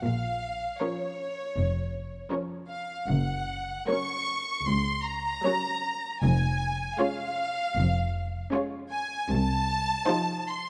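Bowed violins carry a focused, up-front melody over rich double basses and smooth-topped cellos, all with vibrato, in a solemn, elegiac romantic movement for string orchestra that moves with rubato and is cut from a longer piece. At 0.8 seconds a second, even violin line and expressive, more distant violas join, filling out the harmony as it moves from Bbm through Gb and Db/F to F7/C. Close, detailed microphones capture the strings inside a moderate concert hall reverb.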